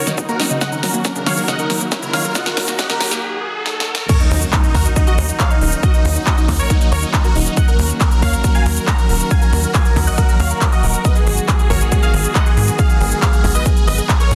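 A punchy, overdriven electronic kick sits up front throughout this emotional, euphoric uplifting trance passage, cut from a longer piece. It opens in a build-up with drum fills, a background riser, and a lush, detuned unison pluck playing arpeggios with 12-bit sampler grit, pumping and dub echo until 3.2 seconds. The drop lands at 4.1 seconds with an impact, and the tight, wave-folded sequencer bass enters at 4.3 seconds, driving and saturated with sidechain pumping. Carrying the melody, huge, bright supersaw chords move through a phaser, cassette tape colour, a low-pass filter, dub echo and pumping, over the harmony of Ebm7 shifting to Abm7. A clear vintage grand piano adds a second line in the background with pumping and dub echo, while a dark, intimate string section holds bowed chords with light vibrato. The layered, overdriven big-room kit brings a punchy snare, crisp hats, shaker, handclaps and crash cymbal, and the whole is set in light digital reverb with a dense, heavily limited modern master.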